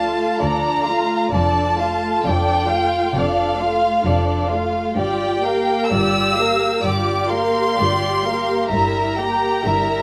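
Elegiac and melancholic, this slow romantic string-orchestra excerpt in D minor moves at 65 BPM with a rubato feel, as a rich, focused violin section sings the melody up front over a second violin line, a warm viola section adds expressive portamento, and a dark, smooth double bass section sounds together with a background cello section beneath, all bowed with vibrato and bathed in a large, wet studio reverb as the harmony passes from Dm through Gm7 to Edim/G.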